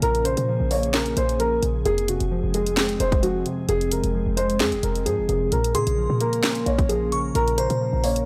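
A dark concert grand piano leads this melancholic trap excerpt, carrying a boxy, deep-toned melody up front over a half-time groove at 131 BPM in Bb minor. Beneath it, warbly lo-fi synth keys with a nostalgic, chorused wobble fill out the accompaniment, while a glassy FM pad with ensemble chorus and its own reverb holds ethereal sustained chords in the background. A short, punchy 808-style bass with a tight sine body and a noise layer anchors the low end, and an electronic trap kit sits up front with a hard-clipped kick, sharp snare, bright hi-hats and finger snaps. At 5.7 seconds a crystalline synth bell enters with a second line high above, its chorus and analog delay adding sparkle. The harmony moves between Bb minor and F minor, and the whole passage has a dry, gritty hardware sound with little reverb.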